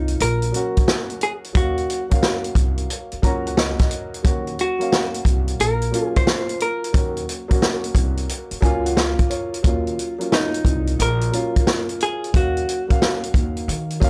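Up front, the vintage acoustic drum kit sets a smoky, mellow jazz-hop groove from 0.1 seconds, with punchy kick, medium-tuned snare and hi-hat swung on the sixteenths and a rolled-off top end that sounds natural in a studio room. Beneath it, the upright bass is plucked on gut strings, giving a thumpy, woody low end. A dark upright piano carries the accompaniment with a smooth, intimate vintage tone, its action noise audible, and it steps forward with fills at 2.9 and 8.3 seconds. The melody comes from a clean, picked electric hollow-body jazz guitar, compressed and dusky in tone, sitting over a single lingering minor ninth chord. The whole cut is dry and gritty, with little reverb, and it is taken from a longer piece.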